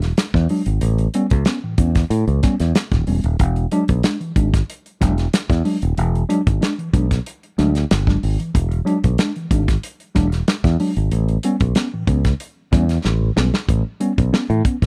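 Energetic and strutting, this funk excerpt moves at 93 BPM in a straight 4/4 feel, centred on E mixolydian. A fingered electric bass sits up front with a bright, growly, punchy tone, heard direct and amped, while an acoustic soul drum kit with a tight kick, a medium-tuned snare, hi-hat and a rolled-off top drives the groove from start to finish. A mellow tine electric piano enters at 0.2 seconds with clean stabs through its built-in speakers, trading between E9 and A9 chords. A drum fill at 13.0 seconds leads into a brief closing section where the harmony settles on Aadd9. The sound is dry and close, like a 1970s studio session in a small room.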